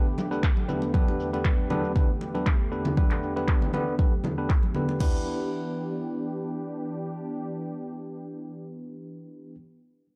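Afro house at 118 BPM in E minor with a hypnotic, spiritual mood, this excerpt layers a smooth, detuned sawtooth pad holding sustained chords with chorus and sidechain pumping under bright, bell-like tine electric piano stabs treated with a low-pass filter and analog delay. Ringing hard-hand congas and tape-toned electronic shaker and handclaps enter at 0.2 s, joined by a deep-kicking house drum kit with crash and toms at 0.4 s, and together they drive the groove until the percussion drops out around 5.0 s, leaving the keys over the shift from Gadd9/E to Em7 in a dry, gritty recording with transformer saturation.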